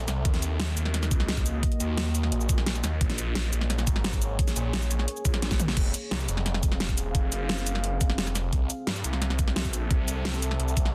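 A thick, swirling detuned saw bass with phaser and overdrive sits up front alongside a deep, moody pad of warbling chorused chords that pumps under sidechain compression, opening this futuristic, aggressive cut of dark technical drum and bass at full drop intensity. A layered electronic kit with a huge snare, metallic hats, shaker, toms and crash sits up front and tape-warm over a knocking electronic kick, with a drum fill at 5.4 seconds leading into a repeat of the drop as the harmony moves from Ebm and Bbm7 to Fm and C6. The mix is dense and heavily limited, set in a digital ambience.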